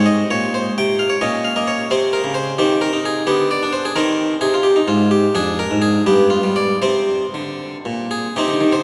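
Classical baroque-style suite movement in C minor, solemn and grave, where a solo French-style harpsichord with a single set of strings sounds bright, airy and plucked up front, moving in a rubato 6/8 at about 76-90 BPM in dotted quarters through harmonies from Ab to a closing Bb9 within a brief 8.8-second fragment, all bathed in a long, wet cathedral reverb.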